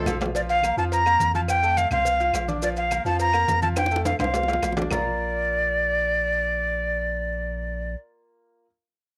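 A drum fill opens this joyful, danceable salsa excerpt at 210 BPM in Bb major, with a brilliant grand piano carrying the accompaniment over a deep, punchy sub bass whose notes land with a pitch-drop attack. The percussion joins almost at once. Ringing, metal-shell timbales and agogo bells and grainy, mellow maracas sit close and dry, while round, low-tuned cowbell and bongos struck with hard hands, thick-skinned congas and woody claves fill in the background. At 0.4 seconds a breathy jazz flute takes the melody up front, reedy and crisp with chiff and vibrato, moving between D5 and Bb5. The harmony alternates between Bb and F, and a second drum fill leads into a new section at 4.9 seconds, after which the percussion stops and the piano, bass and flute carry on. The piano and flute share a cassette-tape color, and a small room reverb frames this homespun cassette recording.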